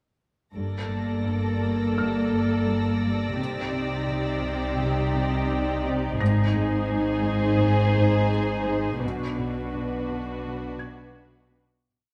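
Mysterious and tense, this complete suspense film cue moves at 85 BPM in a straight 4/4 through Gmadd9, Cmadd9, Ab and Bm. Dark, veiled con sordino strings carry it: a violin section sings the melody over a second violin line, violas supply accompaniment, a lush but very quiet studio cello section pulses an ostinato riff, and a distant chamber cello section and close double basses double the sustained bass. A background French horn section adds mellow swelling chords, high dissonant violin clusters hover until 5.8 s, and a thin-felt upright piano with audible action noise places sparse single notes from 2.0 s, all bathed in a wet scoring-stage reverb before the fade-out from 9.0 s.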